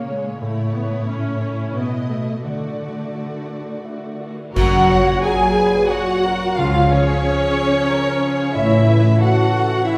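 This cut from a longer, tender and moving orchestral film cue opens with a violin section carrying a smooth melody with light vibrato over a lush second violin line, focused violas and dark, woody cellos. A ringing, bright concert harp plays thumb-plucked arpeggios in the background, while a cymbal swell, clash cymbals and concert bass drum add a close, dry touch early on. In a rubato 3/4 at roughly 84-93 BPM, the harmony moves from A to Dadd9. At 4.6 seconds a full-ensemble accent marks the shift to F#, then C# and back to A. Here a pure, hollow flute section, a warm solo clarinet, a mellow, distant French horn section and bowed double basses join the strings. The cellos and basses stop at 9.1 seconds, and the whole orchestra sits well back in a wet scoring-stage reverb.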